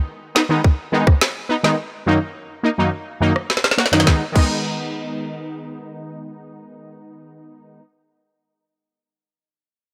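A punchy, detuned synth brass stab opens this bouncy, hypnotic dancehall excerpt in G# minor at 105 BPM, its bright sawtooth tone shaped by chorus, a filter sweep and sidechain pumping as it moves from G#m to D#m/F#. An up-front electronic island pop drum kit with a tight kick, woody snare, rim click and crash joins at 0.4 s, tape-warm and produced, and plays a fill from 3.5 s before dropping out at 4.5 s. The stabs then carry on over G#m until 7.8 s in a light reverb.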